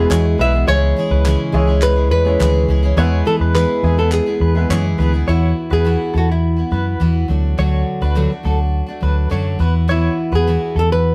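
A straight 4/4 pulse at 104 BPM drives this sunny, easy-going acoustic pop excerpt, where a bright, boxy flamenco guitar carries the fingerpicked melody with audible finger squeak over a full-bodied picked steel-string acoustic guitar, a woody, intimate upright piano in the background until 5.3 seconds, compressed, clean electric guitar arpeggios with tremolo, and a round, punchy, foam-muted electric bass up front, while crisp, close group handclaps clap along until 4.8 seconds, the band playing live in one room with light reverb.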